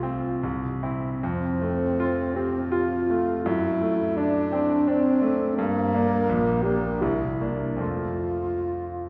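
Tender and serene, this brief romantic classical duo for French horn and grand piano moves at 82 BPM in 3/4 time in F major, with uneven beats and a flexible rubato feel. The French horn carries the melody, its clear, solo tone set up front and colored by a light vibrato in a classical style, moving between Bb3 and G4. Beneath it, the grand piano supplies accompaniment from Bb1 to F4, its brilliant, natural sound placed up front with a short sustain. The harmony passes from C to F, then through D7/F# and Gm toward a C9 that settles back onto F at 7.8 seconds. A wet concert hall reverb with a 2.2-second decay places the listener further back in the room, lending the duo a spacious, gently distant glow across this 9.1-second fragment of a longer piece.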